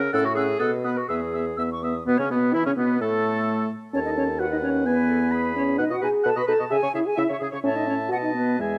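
A quick, graceful classical-period movement for wind quintet in E major, this cheerful passage moves at 129 BPM in a straight 2/4, cut from a longer piece. An airy, vibrato-touched concert flute carries the melody with a soft attack and expressive phrasing, while a clear oboe sings a second line alongside a distant, roomy clarinet and a mellow French horn, the horn standing out as the most present voice. A warm, smooth-topped bassoon anchors the bass, and the ensemble sits in a moderate recital hall with close, detailed microphones as the harmony passes through E, B, C#m and A before closing on B7 at 8.1 seconds.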